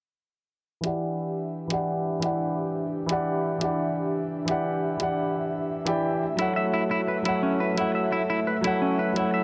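Dreamy and melancholic, this short excerpt of liquid drum and bass moves at 173 BPM in a straight 4/4, resting in E dorian as the harmony shifts from Em7 to F#m7 at 6.2 seconds. A dark, mellow baby grand piano sits up front in accompaniment from 0.8 seconds, filtered and treated with delay, while a filter sweep runs across it. Beneath it, an airy, breathy pad holds sustained chords with a slow attack and long release, its detuned sawtooth and triangle tones blended with a noise layer and thickened by chorus. An electronic kick drum gives a knocking, layered pulse, re-recorded in a small room and trimmed of low end. At 6.4 seconds a clean, fingered semi-hollow electric guitar enters up front with compressed arpeggios trailed by dub echo, and the whole scene sits in a moderate plate reverb with a digital ambience.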